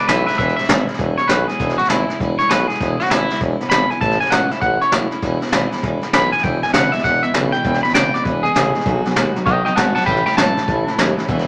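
A swung 8th-note feel at 198 BPM in 4/4 drives this rowdy, rollicking rockabilly excerpt in E major, where a twangy, clean, bright electric guitar carries the melody up front over a brushed jazz kit with a high-tuned snare and boomy kick, a clear, punchy vintage tuba on bass, and a full-bodied picked steel-string dreadnought in the background. A dark, compressed, fingered electric guitar riff joins at 6.4 s. Throughout, the chords move from E to A, back to E, then B and A, all set in a moderate large-studio reverb.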